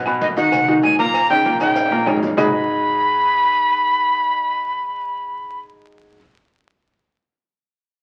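Heard through the crackle of a very old 78 rpm record and a wet club reverb, this fiery salsa fragment puts a breathy, bright jazz flute with vibrato and a crisp chiff up front beside a clear, intimate grand piano whose action noise is audible, the two moving over G#m7, D#7 and back to G#m7. Behind them sit a woody pizzicato upright bass, distant damped congas, ringing agogo bells and timbales, claves, grainy maracas, and very quiet tight cowbell and bongos. A drum fill from 1.8 s leads to the percussion dropping out at 2.4 s, after which piano, bass and flute carry the passionate mood until the flute stops at 5.6 s.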